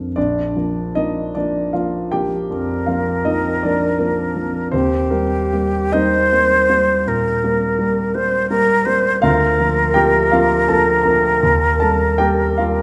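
An airy concert flute with vibrato and tongued notes carries the lyrical melody up front, entering at 2.5 seconds over a dark, mellow grand piano whose deep bass, vintage character and audible action noise give the accompaniment an intimate feel. This warm romantic classical duo moves in a slow, rubato 12/8 at about 47-56 BPM in dotted quarters, in Bb major, with harmonies drifting from Bb to Eb, then Bb/D and back to Eb. A wet recital hall reverb surrounds the pair in this short excerpt from a longer piece.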